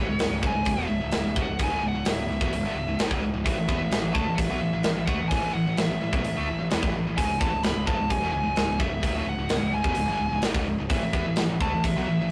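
Heavy metal at 129 BPM in 4/4 with a straight feel, this short excerpt sits in C# phrygian and carries a relentless, dark mood, with the harmony moving between C#m and A5. A high-gain lead guitar carries the melody in a higher register, its distorted, picked tone rounded rather than harsh. Beneath it, two high-gain guitars play the riff in the low range, both bright and sitting in the background, one of them with a scooped, hollowed-out midrange. A growling picked electric bass anchors the bottom with an overdriven, direct-and-amped bite. The tight metal drum kit comes in at 0.2 seconds and stays up front with hi-hat, a tight kick and a medium-tuned snare, its acoustic sound carrying a big-room, mid-forward character. The whole take has the rough feel of a rehearsal-room recording, with light reverb and warm saturation.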